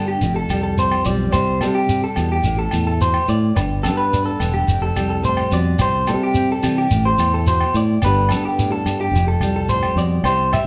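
An up-front electric guitar through a small old amp spins picked, slightly broken-up arpeggios over this carefree, sunny highlife guitar-band passage at 108 BPM in a straight 4/4, cycling through Fadd9, C, Am and G. Beneath it, a full-bodied nylon-string guitar fingerpicks the accompaniment while a punchy fingered electric bass anchors the low end. A grainy, close shekere joins at 0.2 seconds and ringing agogo bells at 0.5 seconds, all captured as a band playing live in one room with a moderate large-studio reverb.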